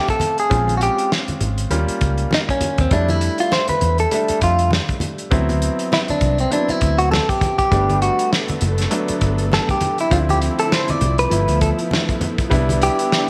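A bright, picked electric guitar carries the melody from the very start of this excerpt, recorded direct, clean and compressed, sitting up front with a touch of spring reverb as a clear grand piano with audible action noise accompanies it. It is lush, cinematic 1970s-style soul at 100 BPM in 4/4, with a swung sixteenth-note feel in D dorian, and the mood is silky throughout. An acoustic soul kit of hi-hat, tight kick and a medium-tuned snare joins almost at once, mid-forward with a rolled-off top, alongside very quiet, low-tuned congas struck with hard hands on thin skins. A dark, foam-muted fingered bass arrives at 0.5 seconds, round and punchy through an amp. At 7.7 seconds a woody, bowed string section enters in the background with vibrato, holding sustained chords as the harmony moves from Gmaj9 back through Dm9 and G13 to close on Cmaj9. The whole piece sits in a small room with light reverb, and the guitar's solo spans the full passage, which is cut from a longer piece.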